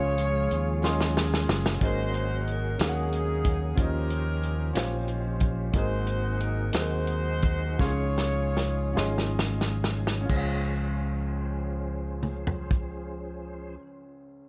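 Soulful and uplifting, this slow gospel excerpt in 6/8 and Db major moves at roughly 41-61 BPM and slows down from 5.7 s to 10.3 s, cut from a longer piece. A saxophone section carries the melody with jazz-style vibrato over a woody, long-sustaining upright piano, clean tonewheel organ chords with chorus vibrato and slow rotary speaker in the background, and a round, punchy fingered electric bass up front. A gritty, saturated soul drum kit with dark cymbals and a tight kick plays fills at 0.8 s and 7.8 s, while a jingly tambourine sounds only until 1.8 s, all in a dry room with little reverb.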